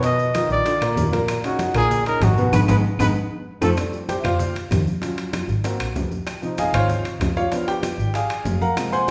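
A breathy, whispered trumpet carries the melody at the start of this fragment of sophisticated, danceable Afro-Cuban jazz at 192 BPM in a straight 4/4, its mellow tone carrying a light vibrato, soft attacks and scooped notes up front until it drops out at 3.7 seconds. A drum fill and a band accent arrive between 2.5 and 3.8 seconds, after which the warm concert grand piano, intimate and natural with deep bass and audible action noise, takes a solo over largely rootless, extended harmonies. Beneath it a bowed double bass sounds dark, smooth and even with vibrato. The percussion is a close, acoustic bed of ringing, low-tuned congas, metal-shell timbales, round hard-hand bongos kept very quiet, and grainy, band-limited vintage maracas sitting in the background. Woody claves, heard in a small room, also sit in the background. The band plays live in one room, bathed in a lush large-studio reverb.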